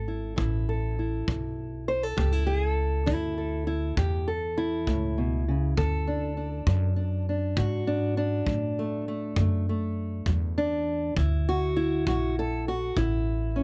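A 12/8 pulse drives this gritty, swaggering acoustic country blues, cut from a longer piece, which moves from A to D at 5.8 seconds. A fingerpicked old ladder-braced acoustic guitar carries the melody up front with a dark, boxy tone from old strings, beside a growly, woody pizzicato upright bass strung with steel. A brushed kick drum enters at 0.4 seconds with a punchy, mid-forward thump and a rolled-off top in a small room, while close, detailed microphones and little reverb keep the sound dry and intimate.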